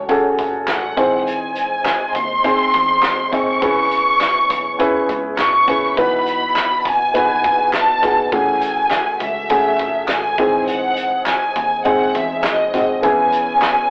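A dark, woody violin section carries the melody up front from the opening moment, bowed with vibrato and a soft attack, while an intimate baby grand piano plays accompaniment close by, its short sustain and audible action noise giving it a natural presence. This is an anthemic, warm piano-driven pop excerpt in E major at 102 BPM in a straight 4/4, cut from a longer piece. A loose indie drum kit joins at 0.1 seconds with a punchy kick, fat snare, hi-hat and handclaps in a pumping studio room, and a round, foam-muted electric bass sits in the background. Further back, a tonewheel organ holds sustained chords through overdrive, chorus vibrato and a slow rotary speaker, its clear, warm tone carrying a touch of key click. The harmony moves through F#madd9, G#/E, E6 and B/E, and the whole passage sounds like a rough rehearsal-room take in a small room, colored by tube saturation and a telephone-like filter.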